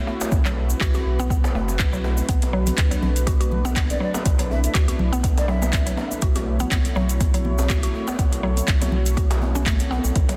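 A smooth, detuned analog pad opens this earthy, spiritual afro house excerpt at 122 BPM, holding sustained chords with chorus and sidechain pumping over a harmony that moves between F#m7/B and Bm7. Almost at once a woody, mallet-like synth pluck joins with short, percussive arpeggios soaked in chorus and tape echo, while a round, sine-toned sub bass pumps underneath and a deep, overdriven electronic kick drives the swung 4/4 groove. An afro-pop kit adds handclaps and metallic hi-hats, a distant djembe with metal rattles sits in the background, and a grainy, bright egg shaker ticks close and dry. Soft-handed congas slip in very quietly at 2.4 seconds, and from 3.9 to 5.9 seconds a breathy, hollow jazz flute drifts in from afar with vibrato, chiff and tape echo. The dense, heavily limited modern master keeps the kick and sub bass firmly up front within a light studio reverb.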